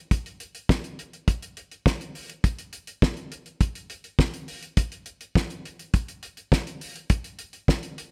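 A straight 4/4 funk groove at 103 BPM runs through this short excerpt, carried by a damped 70s drum kit playing hi-hat, kick drum and snare drum from 0.1 to 8.1 seconds. The kit sits up front and sounds dry and acoustic, with a fat snare, a tight kick and a rolled-off top. Light reverb gives the slick, late-night feel a little air.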